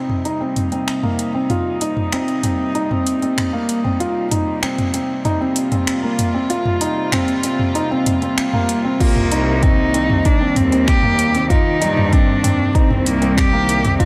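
A felt-muted upright piano opens this hypnotic, intimate piece of piano and strings electronica, playing a soft, mellow riff up front with a delay trailing each phrase, while a distant chamber string section floats beneath on sustained chords, pulsing with sidechain pumping and a low-pass filter that sweeps through the build-up. A deep house drum kit joins almost at once with metallic hats, finger snaps, toms and a crash cymbal, its tape-warm, layered sound set in a small room. The tempo sits at 96 BPM in 4/4 with a straight feel, in C minor over a Cm7 chord. At 9.0 seconds the drop arrives: an up-front electronic kick adds a deep punch, a bright studio cello section takes the bass line with tube saturation and pumping, and a single bowed cello carries a focused, vibrato-rich melody. A huge ambient reverb with a four-second tail surrounds the whole mix, giving this excerpt, cut from a longer piece, a spacious glow around its close, intimate core.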